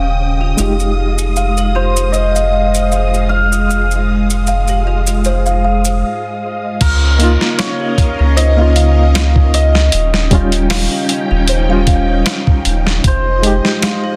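This trip hop excerpt moves at 77 BPM in 4/4 with a light sixteenth-note swing, its hypnotic, smoky mood set in F minor over chords of Eb7, Fm7 and Db69. A reedy electric piano with fast tremolo and tape echo plays accompaniment beside a string machine's mellow cello chords, shaded by phaser and ensemble chorus, while a deep, round dub sub bass sits up front. A delicate, slightly out-of-tune music box spins arpeggios through sampler grit and dub echo under a filter sweep, and maracas with group handclaps shake until a short break at 6.0 seconds. A hammered, shimmering cimbalom carries the melody from 1.8 seconds, its ringing tone trailed by dub echo. At 6.8 seconds a pitched-down, gritty boom bap kit arrives with a thumpy kick, medium-tuned snare, hi-hat and crash in a small room, sitting forward in a dense, heavily limited mix with little reverb.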